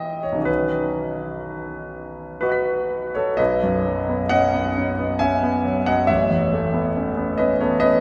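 Luminous and serene, this short passage of impressionist classical solo piano is cut from a longer piece and drifts in a rubato 3/4 at around 61-70 BPM, centred in B mixolydian with the instrument tuned to A4 = 444 Hz. A concert grand plays alone throughout the 8 seconds, reaching from A1 up to B6 with deep bass and a polished, intimate tone, its action noise audible up close. A Badd9 chord sounds at 0.5 seconds, and the harmony moves to Aadd9 at 6.1 seconds. The phrase is stated and then restated, giving the fragment a repeating shape. The piano sits up front and present, its long sustain blooming into a wet cathedral reverb with a 5.2-second decay that bathes every note in a spacious glow.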